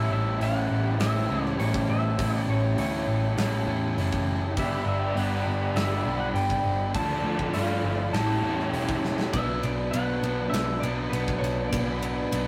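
Wistful and blissful, this short cut from a longer shoegaze and dream pop rock piece moves at a straight, unhurried 101 BPM in A mixolydian, with a rough rehearsal-room sound and warm saturation in a wet small room. Two overdriven guitars carry the riff down low: a semi-hollow one sits up front with a hollow-body tone, while a raw, lo-fi garage guitar plays alongside it from the start until it drops out at 9.3 seconds. Above them, an electric guitar through a small old amp plays the melody with a dark, slightly broken-up, compressed, fingered sound. A pedal harmonium breathes reedy, mellow sustained chords in the background, and a foam-muted picked electric bass adds a round, amped low end. A gated 80s drum kit with an airy, polished big-room sound, a tight kick and a medium-tuned snare comes in at 0.4 seconds, plays a fill at 9.0 seconds, and leads into a new section where the harmony moves from A7, Gmaj7 and Dm6 to Bm7.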